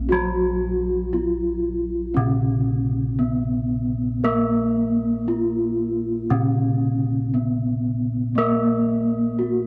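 All three parts sound together from the opening moment of this stately, shimmering excerpt of Javanese gamelan in Bb pelog, moving at a slow 58 BPM in a straight 4/4. The melody sits up front on a bronze metallophone struck with padded disc mallets, giving a mellow, soft, ringing tone with a vintage, band-limited character. Beneath it, a second bronze metallophone carries the accompaniment with a horn mallet, sounding bright and metallic, its paired tuning producing shimmering beats. The bossed gongs supply the bass across a broad span from Bb1 to Bb4, round and full in tone, with a beating resonance that stays close-miked and dry. A moderate plate reverb lends the ensemble a ringing sense of space through the full 9.7 seconds of this single section.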